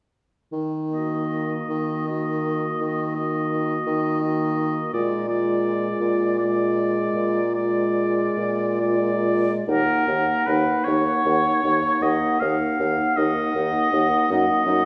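In a rubato 12/8 pulse of 43-57 BPM, this slow, yearning and elegiac romantic movement for wind quintet in Eb minor, cut from a longer piece, opens with a present, up-front bassoon bass at 0.5 seconds. It is joined by a soft-attacked oboe second line with light vibrato, a mellow French horn accompaniment and a smooth clarinet accompaniment in the background, before an airy, hollow silver flute melody with vibrato enters at 9.7 seconds, all heard from further back in a wet recital hall.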